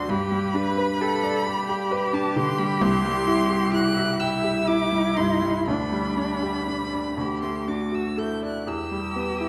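Classical slow romantic movement for piano trio in G major, a tender passage cut from a longer piece, unfolding in a rubato 6/8 at 39-45 BPM in dotted quarters. A close, bowed violin sings the high melody with smooth, even vibrato, a rich, focused cello carries a second line beneath it, and an up-front baby grand piano gives bright, brilliant accompaniment with long sustain across a broad range. A wet recital hall reverb and dark production surround the harmony as it moves from G through C and G/D to D and E minor.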